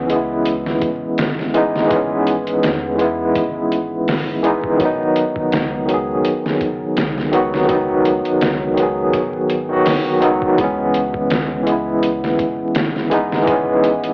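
Wrapped in vinyl crackle and an AM-radio tone, this cassette home recording sits in a moderate spring reverb, framing a brooding, cinematic trip hop fragment cut from a longer piece. Up front, a bright, barky tine electric piano carries the accompaniment with a clean, direct voice colored by tremolo, cassette tape and tape echo. It moves from C#m7 to B/C# at 4.8 seconds and back to C#m7 at 10.6 seconds. Beneath it, a deep, round sine sub bass holds sustained, fast-attack notes, mellow and tucked into the background. A sampler-style drum kit joins at 0.1 seconds with a thumpy kick, a medium-tuned snare and hi-hat, sounding compressed, pitched down and muffled, with overdrive grit, studio reverb and its own cassette tape treatment. A light swing on the sixteenths gives the groove a loose, heavy-lidded sway.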